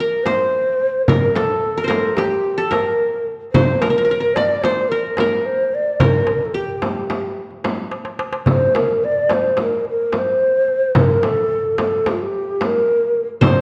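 A Turkish makam ensemble piece in 9/8, moving at 219 BPM counted in eighths, with a melancholic, soulful mood in this short cut from a longer work. A breathy, mellow ney carries the melody up front from start to finish, its hollow, end-blown reed tone softened by vibrato and rolled-off highs. Beneath it, a qanun played with fingerpicks adds a bright-edged second line from triple strings, dropping out at 7.8 seconds and returning only briefly at the very end. Darbuka and frame drum enter at 0.3 seconds, the metal-shell darbuka crisp and dry while the frame drum sits forward with a warm, live-room sound, and they break into a fill between 7.9 and 8.5 seconds before the opening section repeats. The whole performance sits in a recital-hall reverb and carries the worn, warbling pitch drift of old cassette tape.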